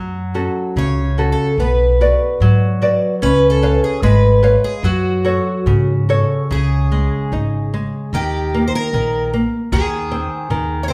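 This fado-style ballad moves at 74 BPM in 2/4, but the beats are uneven and the rubato feel lets the pulse breathe, suiting its mournful, longing mood in F# harmonic minor. A fingerpicked nylon-string guitar with old strings gives a woody, warm, small-sounding accompaniment from the start, joined at once by a pizzicato upright bass whose steel strings sound bright in the low register. At 0.8 seconds a fingerpicked twelve-string acoustic guitar enters with the melody, its octave-doubled strings shimmering with a boxy, parlour character. All three sit up front, as if the band is playing live together in one large studio, wrapped in a wet reverb. The harmony moves from F#m through Bm and C#7 back to F#m before shifting at 6.5 seconds to C#sus2, D#5 and G#/D#, closing this excerpt from a longer piece.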